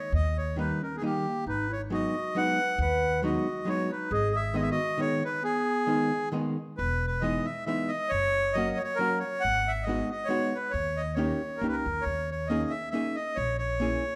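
Musette waltz excerpt in G# minor at 136 BPM in 3/4, nostalgic and bittersweet, with a reedy, clear accordion up front carrying the melody over the woody, thumpy pizzicato of an upright bass and the dark, clean picked accompaniment of an amplified hollow-body archtop guitar, while a warm, distant clarinet adds a classical-style second line from 0.6 to 6.3 seconds, all set in a moderate recital hall reverb.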